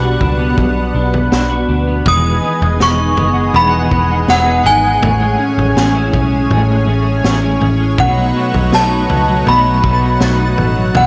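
A chiming FM synth carries the melody in this blissful, floating dream pop excerpt, its inharmonic, ringing tones decaying after a fast attack and shimmering through ensemble chorus, phaser, tremolo and tape echo. Beneath it, a lush, detuned unison pad holds thick, airy sustained chords with a soft attack, while a dark, clean electric guitar picks arpeggios coloured by ensemble chorus and tape echo. A round, punchy muted electric bass anchors the low end, and a vintage acoustic drum kit with a tight kick, high-tuned snare and toms sits in the background with a rolled-off top, entering at 0.2 seconds. A second warm, clean, picked guitar joins at 2.0 seconds as background accompaniment with tremolo and subtle chorus, and a faint, twinkling granular texture with an octave-up shimmer sparkles in briefly from 3.2 seconds and again near the close. At a relaxed 81 BPM in straight 4/4, the harmony drifts from Gmaj7/B through Emaj7 and Amaj7 to B7, all captured in a dry, gritty hardware recording with light reverb and a touch of studio ambience.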